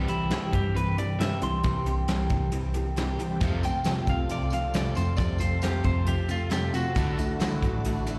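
Heard through a venue's PA with a touch of recital-hall reverb, this short live cut of folk rock and heartland rock moves at 136 BPM in a straight 4/4 and carries a hopeful, warm mood. A bright, full-bodied jumbo acoustic guitar picks the accompaniment while a dark, double-tracked overdriven electric guitar plays a compressed riff with slapback echo. Underneath, a round, hollow-body short-scale bass sits low and amped, and a soft brush kit supplies a punchy kick and a medium-tuned snare with hi-hat. Above them, a slightly broken-up electric guitar carries a second line with plate reverb and slapback, and an electric guitar solo runs across the whole clip. From 3.1 seconds a full tonewheel organ adds sustained chords through a slow rotary speaker in the background, joined at 3.4 seconds by a jingly, vintage tambourine, as the harmony moves from C to F and then to Dadd9 at 7.0 seconds.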